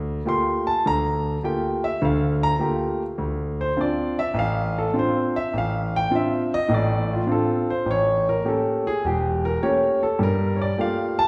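Jazz in a moody, cool vein, this short swung piece from a longer work features a solo concert grand piano playing alone for the full 11.3 seconds. The piano sounds intimate and up front, with a deep bass, a smooth vintage character and audible action noise, moving through chords from Gm9 to Dm7 and A7b9 before returning to Gm9. A wet recital-hall reverb surrounds it with the resonance of a church or concert hall.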